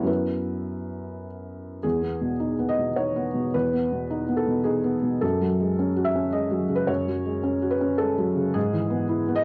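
Hopeful and tender, this short neoclassical minimalist piano fragment, cut from a longer piece, sways gently in 3/4 with a rubato feel. A lone felt-muted upright piano sits up front, mellow and intimate, ranging from E2 to E5 through a cassette-tape coloring, with chords moving from Bsus4/F# through Emaj7 at 1.8 seconds and F#madd9 to E/G#. A wet small-room reverb and the home cassette recording give it a close, private character.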